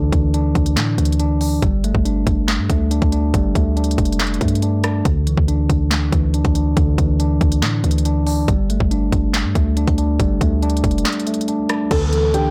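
A deep, boomy 808-style bass with a noise layer anchors this hard-hitting, eerie half-time trap excerpt at 140 BPM, joined by an up-front electronic drum kit with hard-clipped kick, sharp snare, crisp hats, handclaps, rim clicks and crash, and a mellow, clean tine electric piano under a low-pass filter moving between Dsus2 and Gsus2, until a break at 11.1 seconds leads at 11.9 seconds into the entry of a dark, boxy, thumb-plucked flamenco guitar, an electronic downlifter and, at the very end, a barely audible glassy FM pad, within a dry, blown-out, overdriven recording.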